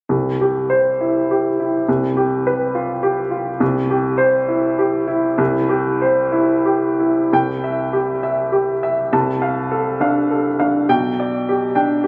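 Warm and hopeful, this short excerpt from a romantic character piece for solo piano unfolds in C major with a gently flexible rubato, moving in 6/8 at roughly 59-70 beats per minute counted in dotted quarters. A clear grand piano carries everything alone from 0.1 to 12.1 seconds, its sound present and up front, ranging from B1 up to A5. The harmony rests on C, leans toward G7 over a C bass, and settles back home before a second section begins at 7.3 seconds. That later passage turns to a Dm7 over C and then a G chord with B in the bass, leaving the phrase open as the clip ends. A moderate reverb lends the piano a soft halo, while the phone capture adds a sense of studio air around the instrument.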